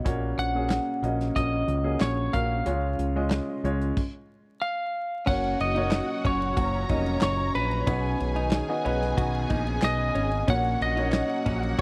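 A straight 4/4 groove at 92 BPM drives this warm, hopeful piano-driven pop excerpt in F# major, where a short-sustain grand piano, an overdriven picked bass and a punchy modern drum kit with bright cymbals and handclaps back a dark, slightly broken-up lead guitar from 0.4 seconds, pausing on a stop at 4.0 seconds before a lush bowed violin section, a very quiet airy sawtooth pad and a clean, compressed background guitar riff join at 5.3 seconds, all in a dry, close 1970s-style studio sound with vinyl crackle.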